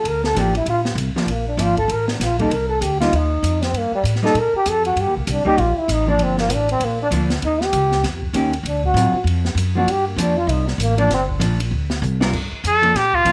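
Swung in 4/4, this moody, cool small-group swing and bop fragment features a breathy, whispered trombone soloing until 11.2 seconds over thumpy, woody pizzicato upright bass, dark, clean hollow-body guitar accompaniment and an acoustic drum kit with a high-tuned snare and boomy kick that plays a fill at 12.0 seconds, before a punchy, forceful trumpet with vibrato and slapback echo enters at 12.7 seconds, heard in a studio room with moderate spring reverb.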